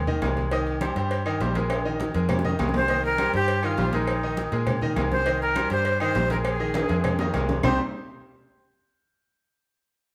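Recorded live in one room with a moderate large studio reverb, this fiery, passionate salsa excerpt in C minor at 202 BPM rides on a dark, foam-muted vintage electric bass and a brilliant, short-sustained grand piano up front, over ringing congas, round low-tuned cowbell and bongos, distant metal-shell timbales and agogo bells and very quiet woody claves, with drum fills at 1.7 and 6.7 seconds and an airy silver concert flute with vibrato and a crisp attack entering on the melody at 2.8 seconds as the chords alternate between Bb7sus4 and Cm.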